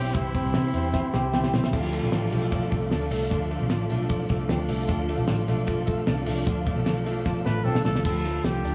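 An echo-heavy mix with light reverb and small room ambience frames this bittersweet, wistful slice of jangly indie pop, cut from a longer piece. Dub echo trails the reedy, heavy-vibrato combo organ, a full-bodied jumbo acoustic guitar and bright, direct-recorded electric guitar arpeggios in the background, while a dark, foam-muted bass and a dry, cloth-damped drum kit with a fat snare and tight kick sit up front. A clear, punchy trumpet carries the melody only briefly, at the opening and again from 7.4 s, and a drum fill leads the move from C to D minor at 1.7 s.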